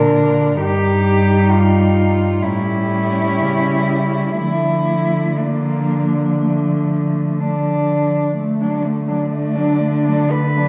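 A wet recital-hall reverb, heard from further back in the room, surrounds this brief, yearning and solemn passage for four muted cellos, each a single bowed player con sordino, cut from a longer classical piece in D minor. The lyrical music moves in 4/4 at a rubato 57 to 68 BPM, and all four cellos play throughout. The melody cello sings from D4 to B4 with light vibrato, soft attacks and portamento, its tone dark and distant yet placed up front. Beneath it, a veiled second line between A3 and Eb4 carries vibrato and a smooth top. An accompaniment voice from D3 to A3 shares the melody's light vibrato, gentle attacks and gliding portamento. The bass, close and up front from G2 to D3, anchors a harmony that drifts from Bb through Eb/G and A7 to D minor, before brightening to D major when a new section begins at 8.4 seconds.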